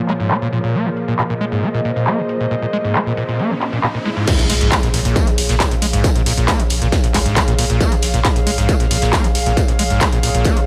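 Driving peak-time techno with a relentless, hypnotic mood, cut from a longer piece, it opens on a very quiet, swarming detuned drone, a warbling lo-fi pad with chorus and phaser, a squelchy, screaming acid line with distortion, tape echo and resonant filter sweeps, and a techno drum kit of metallic hats, handclaps, ride and crash. A background riser builds from 2.7 s into an impact at 4.3 s, where the drone stops and the drop arrives with an up-front distorted electronic kick, a thick, saturated sub bass with sidechain pumping, and a faint acoustic brush kit of snare, hi-hat and tambourine in a small room. The sound carries light studio reverb, with the acid line pushed up front.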